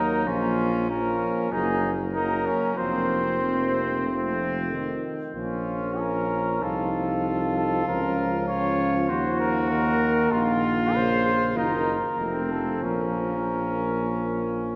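Heroic and grave, this classical brass quintet fragment unfolds in Bb minor at a rubato 95 BPM in 4/4, moving through minor chords and a suspended dominant before settling back on Bb minor at 12.8 seconds. An up-front cornet with a warm, smooth top carries the melody while a bright, distant trumpet sounds a second line, and a French horn with light vibrato and a trombone with vibrato fill in the accompaniment from the background. A mellow, up-front bass trombone anchors the low end, all of it bathed in a wet church reverb.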